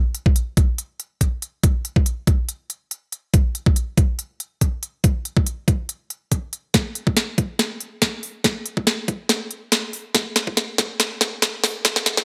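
A lush, bittersweet future bass build-up with a half-time, lightly swung feel, cut from a longer piece and carried entirely by drums. A trap kit with crisp hats and a sharp snare enters at 0.1 seconds, joined by a knocking electronic kick at 0.3 seconds, both overdriven, up front and re-recorded in a small room. A filter sweep runs through the whole passage over light reverb and a high-pass filter, and a drum fill takes over from 6.7 seconds until the close at 12.2 seconds.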